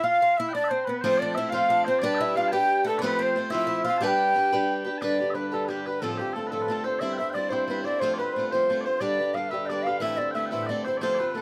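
An airy, end-blown shakuhachi carries the melody of this cheerful, rollicking Celtic jig in 6/8, its soft attack and vibrato sounding up front yet slightly distant. Small bagpipes share the same register as a sweet, continuous second line with their own vibrato, while an Irish bouzouki adds a picked, metallic double-string shimmer until it drops out at 4.6 seconds. A bright, boxy acoustic guitar enters at 1.0 seconds with picked, swing-style accompaniment close to the listener. From 5.0 seconds, as the tune moves into its second section, a reedy accordion settles into a low background drone with mellow, slow-beating tone-chamber colour. Light reverb surrounds this cut from a longer piece, which ends on an A minor chord.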